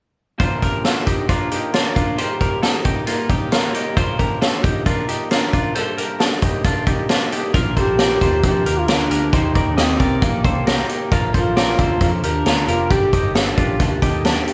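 Recorded as a band playing live in one room with light reverb, this breezy, nostalgic slice of jangly indie pop is carried by bright, twangy twelve-string electric guitar arpeggios with spring reverb, a slightly broken-up, lo-fi electric guitar sitting in the background through a small old amp, and an up-front vintage drum kit with a punchy kick, medium-tuned snare, hi-hat and a rolled-off top. At 7.5 seconds a dark, round, foam-muted picked electric bass joins in, and from 7.8 seconds a mellow, distant duduk sings a folk-style solo melody with soft attacks, vibrato and scooped notes. The duduk falls away at 13.4 seconds, with the guitars, bass and drums carrying on over a gently cycling progression.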